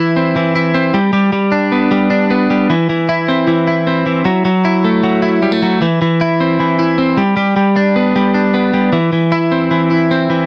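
A straight 4/4 pulse at 154 BPM drives this bright, nostalgic indie pop excerpt, where a solo twelve-string electric guitar, clean, twangy and compressed, picks through C/E, G and F#m7 up front in a dry, close 1970s-style studio sound for the full 10.5 seconds.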